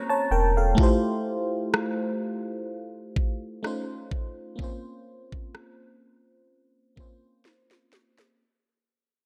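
A glassy, bell-like FM electric piano with chorus opens this tender, dreamy contemporary R&B excerpt at a slow 63 BPM with a lightly swung 16th feel, tuned to A4 = 438 Hz and moving from Bbmadd9 through Fmaj9 and F7b13, while a brief round, deep sine sub bass note sounds at 0.3 seconds, an up-front electronic trap kit with a knocking kick, sharp snare and rim click enters at 0.8 seconds and closes with a drum fill from 7.4 seconds, all within a dark production with light reverb and digital ambience that fades out throughout.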